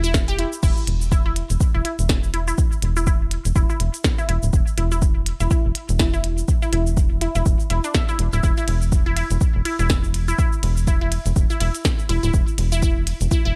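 Set in a digital ambience, this short, sparse cut from a longer minimal techno track has a quirky, swung 4/4 groove, with a deep, up-front electronic kick entering at 0.1 seconds over a rubbery, hollow square-wave bass that bounces and pumps against it. A minimal click kit adds a tiny snare, clicky hi-hats, cabasa, crash and ride in studio reverb. On top, a juicy, squelchy blip pluck repeats its riff through phaser, tape echo and sidechain pumping.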